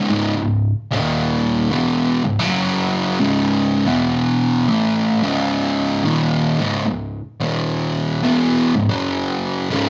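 A double-tracked fuzz guitar opens this brooding, sludgy metal excerpt alone from the start, its picked, compressed, distorted tone sitting up front in a lightly reverberant room as it churns through a swung, low-register run of power chords and C# minor for just under 10 seconds.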